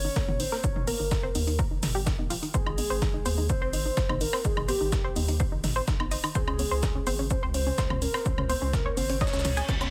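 Progressive house at 126 BPM in 4/4, bittersweet and dreamy, this brief excerpt moves from Eb7/G to Abmaj7 and Db5 as a soft, octave-layered synth lead carries a dark, sustained melody through chorus, phaser, tape echo and cassette grit. Alongside it, a bright analog pluck runs arpeggios under a filter sweep, and a round, deep analog bass pumps with a punchy kick, the pluck and bass both steeped in sidechain pumping. A gritty, pitched-up breakbeat kit with a high-tuned snare, electronic hi-hat and woodblock, and dry, overdriven toms and congas fill out the groove in a close, nearly reverb-free space, before a reverse cymbal rises in at 9.4 seconds.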